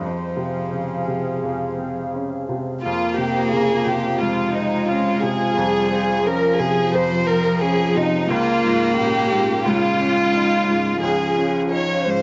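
A single bowed cello, intimate and close with light vibrato and an airy sul tasto tone, opens this excerpt alongside a bright, woody upright piano playing accompaniment and a deep, moody analog pad whose detuned sawtooth chords carry a sub octave and a chorus shimmer. The music is neoclassical piano and strings in F minor, moving at a rubato 88 BPM in 4/4, tuned slightly low to A4 = 436 Hz, with a longing, fragile mood. At 2.8 seconds a chamber violin section enters up front with the melody, its soft-attack, vibrato-rich ensemble sound the most prominent voice while the cello continues as a second line beneath it. The harmony rests on F minor before shifting to Db at 8.3 seconds, and the pad's slow-attack chords sustain underneath throughout. A moderate plate reverb with a 3.0-second tail wraps the ensemble, and the top end is rolled off above 7.7 kHz; the excerpt itself is cut from a longer piece.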